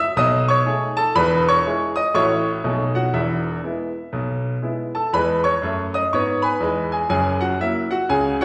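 A brilliant, vintage-toned grand piano sits up front and plays solo throughout this short stride jazz clip, spanning a range from E1 to E6 in E major at 121 BPM with a swung eighth-note feel. The mood is exuberant and playful, with a repeated opening passage moving through B13, E and A6 chords before reaching F#7 at 7.1 seconds. A lush recital hall reverb gives the piano a spacious concert-hall setting, and the clip is cut from a longer piece.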